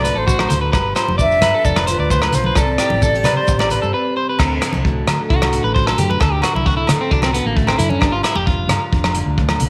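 A breathy, unsteady silver flute carries the melody of this joyful 132 BPM highlife guitar band until 4.2 s, over a full-bodied jumbo acoustic guitar with finger squeak, slightly broken-up electric guitar arpeggios with slapback echo, a round hollow-body bass, a gritty, saturated breakbeat kit with tight kick and dark cymbals, grainy shekere, distant ringing agogo bells and hard-handed congas, before a brief break opens onto a clean electric guitar solo from 4.4 s, all in a warm small-room sound.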